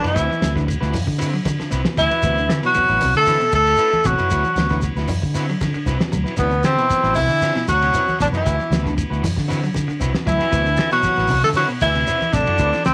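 Driving and joyful, this afrobeat excerpt moves at 116 BPM in a straight 4/4, sitting in D mixolydian over a single D13 chord. A warm tenor saxophone carries the melody up front, its light vibrato set in a roomy, distant space, while a bright trombone section and a raspy, growling trumpet with scooped notes add second lines in the background. Two dark, slightly broken-up electric guitars sit further back, one picking arpeggios and the other fingering stabs, joined by a very quiet reedy electric piano with fast tremolo. A fingered electric bass brings an amped, growly low end beneath a cloth-damped, thuddy drum kit whose fat snare, tight kick and dark cymbals sound muffled and gritty. A grainy shekere enters at 0.1 seconds and thin-skinned, low-tuned congas at 0.4 seconds, both close and quiet, with light reverb and small room ambience around the whole band.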